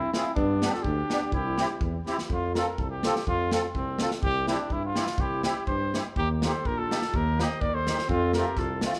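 Bouncy and festive, this alpine folk dance-band excerpt in a loose, rubato 2/4 puts a warm, classically styled trumpet melody up front over a mellow tuba bass with light vibrato, a reedy, shimmering musette-tuned accordion and a punchy, airy acoustic drum kit that plays a fill at 2.1 s, while a clear clarinet second line sits in the background, dropping out at 1.8 s and returning at 5.2 s, the band sounding live in one room bathed in large, wet studio reverb.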